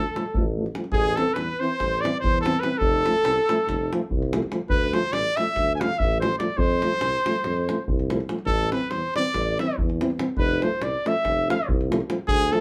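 A clear trumpet carries the melody up front with a light vibrato, while a very quiet clarinet adds a second line in the same register in this virtuosic, fiery Balkan brass band fragment, taken from a longer piece and running in a brisk 9/8 at 286 BPM counted in eighths. Underneath, a warm, distant tuba holds the bass, joined at 0.2 seconds by a dark, smooth-topped French horn, a mellow, roomy euphonium and a deep acoustic davul. The harmony cycles through D minor, A minor and F, and the whole band is heard from further back in a small room with moderate reverb.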